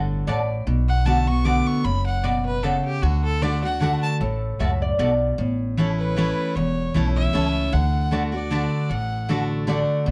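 A swung waltz at 153 BPM drives this lively, virtuosic bluegrass excerpt in D major, with a thumpy, woody upright bass and a full-bodied jumbo acoustic guitar picked up front beneath the chords. A clear, nasal fiddle carries the bowed melody from 0.9 s with light vibrato, while a round, double-strung mandolin adds picked stabs. A metallic lap resonator guitar, played with slide and fingerpicks, slips in short second-line phrases at 0.0, 4.2 and 9.3 s, all set in a dark production with moderate studio reverb.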